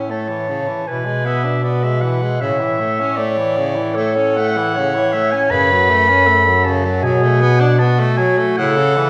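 In a flexible, rubato 4/4 at 78 BPM, this serene, lyrical classical fragment for single-reed quartet sets a clear, up-front clarinet melody over a softly attacked second clarinet line, a tenor saxophone accompaniment with light vibrato and a smooth top, and a warm, up-front bass clarinet, all heard from further back in a reverberant recital hall as the harmony moves from A through F#m and Bm7 before returning to A at 8.6 seconds.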